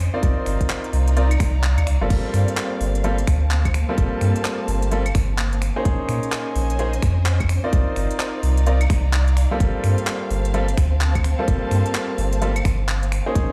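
Swung sixteenths at 128 BPM drive this moody, bouncy two-step UK garage excerpt in G minor, where a tight, tape-warm electronic kick and a crisp-hatted garage kit of claves, crash cymbal, finger snaps, handclaps and hi-hat sit over a deep, round sub bass up front, while bright concert grand piano stabs pass through a low-pass filter and delay and a lush, bowed string section pumps with sidechain beneath Cm11, Gm11 and Bbm11 chords, the whole mix sounding as if played on a big sound system in a bare stone room.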